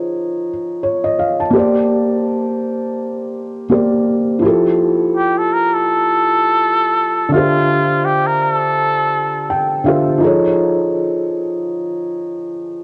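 This dreamy, mellow hip hop fragment, cut from a longer piece, moves with a loose, swung sixteenth-note feel. A felt-muted upright piano carries the accompaniment throughout, its dark, intimate tone softened by a low-pass filter and by thick felt, with audible action noise sitting up front in the mix. It moves through rich jazz harmonies such as F7alt, Bb69, Fmaj9 and Dm11. A trumpet with a cup mute takes the melody from 5.2 to 9.9 seconds, playing a veiled jazz-style solo line with vibrato and a soft attack that is also filtered and placed up front. The piano slips in a short fill at 9.1 seconds. A moderate plate reverb and the sound of worn, warbling old cassette tape, with its drifting pitch, give the whole piece a vintage haze.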